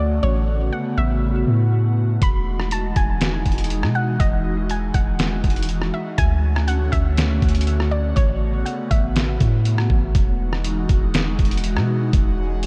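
A half-time 4/4 groove at 121 BPM anchors this dreamy, blissful atmospheric cloud-rap fragment in E major, where a deep, dark 808-style bass sits up front beside an airy, breathy pad with chorus, phaser and sidechain pumping, a soft, round pluck melody treated with tape echo drifts on top until 9.1 s, and a muffled, pitched-down trip hop sampler-style kit with a thumpy kick, rim click, hi-hat and snare arrives at 2.2 s, all moving through A69, Emaj9 and Dmaj7 in a light digital ambience.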